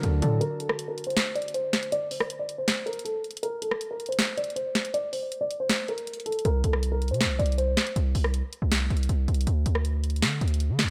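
A dark, mellow grand piano melody opens this menacing, melancholic trap excerpt at 159 BPM in a half-time feel, its vintage tone softened by a low-pass filter and trailed by tape echo, over an up-front electronic kit of sharp snare, rim click and bright hi-hats. A heavy, distorted 808 bass hits briefly at the start, then drops out at 0.4 seconds for a break before returning at 6.5 seconds with an aggressive, fast-attack punch. The piano stops at 7.9 seconds, leaving the drums and bass in a dry, echo-heavy mix.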